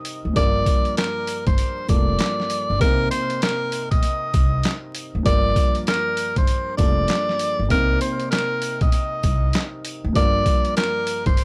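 Tough and dark, this boom-bap hip-hop cut from a longer piece moves at 98 BPM in 4/4 with a 62% swing on the sixteenths, sitting in C dorian over a cycle of Gm9 and Cm7 that closes on Gm7. An up-front, sampler-style drum kit drives it from the start with a thumpy kick, a medium-tuned snare, hi-hat and handclaps, all compressed, pitched down, gritty and tape-warm. A dusky baby grand piano plays a mellow, intimate, vintage-toned accompaniment, filtered at both ends so its audible action noise stays close and soft beneath the beat. The pizzicato upright bass enters at 0.2 seconds with a woody, steel-string thump, while jingly, saturated sleigh bells tick along in the background. From 0.4 seconds a breathy, close-miked tenor saxophone takes the solo melody up front in a jazz style, using subtone and vibrato and trailing an analog delay. The whole recording is dry and gritty, with hardware grain and vinyl crackle and very little reverb.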